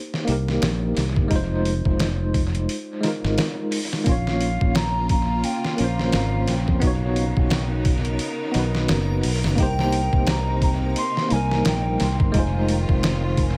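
A gritty, compressed sampler-style drum kit sits up front in this hypnotic, cinematic trip hop excerpt, its pitched-down thumpy kick, medium-tuned snare and hi-hat trailing dub echo at 87 BPM in 4/4 with a swung sixteenth feel. A punchy fingered electric bass, direct and amped, shares the foreground, while a bell-like, clean tine electric piano carries the accompaniment through tremolo and tape echo from the start. At 4.1 seconds a distant silver concert flute enters with a pure, straight-toned, expressive melody and crisp attack, dub echo following its line until 12.2 seconds, as a lush, bowed symphonic string section holds biting, focused chords with vibrato in the background. From 5.0 seconds a reversed, swelling granular texture adds a dreamy, sustained Bb4 behind them, soaked in its own reverb. The harmony in Bb dorian moves from Cm7 and Fm7 through Bbm and Badd9 before returning to Cm7 and Fm7, set in an echo-heavy mix with light reverb.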